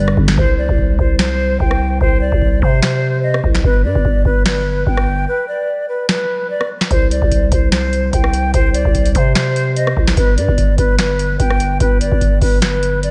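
Dark and hard-hitting, this trap excerpt moves at 147 BPM in 4/4 with a half-time feel, tuned slightly flat to A4 = 438 Hz. A hollow concert flute carries the melody up front, close-miked and airy with vibrato and a crisp attack, its lines trailed by a diffuse ambient delay. Beneath it, a growling 808-style bass sits just as forward, buzzy and sine-based with a fast attack that decays after each note. A booming analog drum machine drives the track with a deep kick, snare, metallic hi-hats, rim clicks and finger snaps. The harmony alternates between C5 and G, and a break stretches from 0.4 to 6.9 seconds. A moderate plate reverb soaks the dreamy mix, and the top end is rolled off above 10.3 kHz, giving the whole track a dusky haze.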